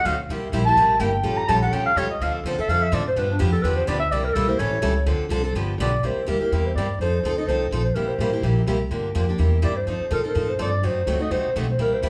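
Set in a small studio room with moderate ambience, this lively, swinging cut from a longer acoustic string swing (jazz manouche) piece moves at 250 BPM in C mixolydian, with a breathy, whispered clarinet carrying the melody through plate reverb and soloing from 0.0 to 6.0 seconds, a woody, thumpy pizzicato upright bass on gut strings sitting up front, and a bright, picked steel-string acoustic guitar accompanying from 0.1 seconds over changes that open on C7 and A7alt.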